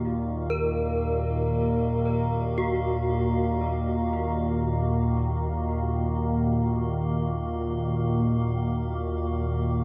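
Ominous and cavernous, this dark ambient drone in Eb minor drifts in free time, fading in over about 9.8 seconds as a calm organ-like drone sits up front with ensemble chorus beneath a deep, moody pad of detuned, wave-folded, ring-modulated tones with chorus, while a faint, eerie inharmonic FM drone with phaser hovers in the background and a bright bronze gamelan-type metallophone rings out shimmering arpeggios through analog delay until 8.8 seconds, all steeped in a huge, dreamy reverb.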